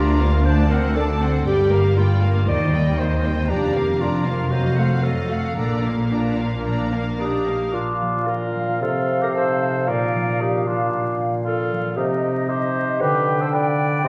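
A ringing, thumb-plucked concert harp spins arpeggios through this spirited, graceful, fast romantic orchestral passage in Bb major at about 110-122 BPM with rubato, joined throughout by a distant clarinet, while for the first 7.7 s a lush violin section carries the melody over a smooth studio violin section, clear viola and cello sections in the background and a dark, soft-edged double bass section, before a mellow oboe enters at 7.2 s and a bright, airy flute ensemble and a classical-style bassoon follow, the whole heard from further back in a wet recital hall with vinyl crackle.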